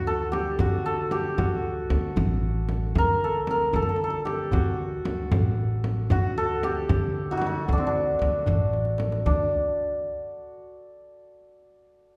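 A shimmering, ringing hammered santur leads this hypnotic, longing Persian modal ensemble fragment in D dastgah homayun, moving in a straight 6/8 at 76 BPM over a dark, woody pizzicato upright bass, a deep, close and dry frame drum played with soft hands and a very quiet tombak struck with hard hands, heard from further back in a recital hall's reverb, with a drum fill at 8.7 seconds before the santur rings on alone until 10.6 seconds.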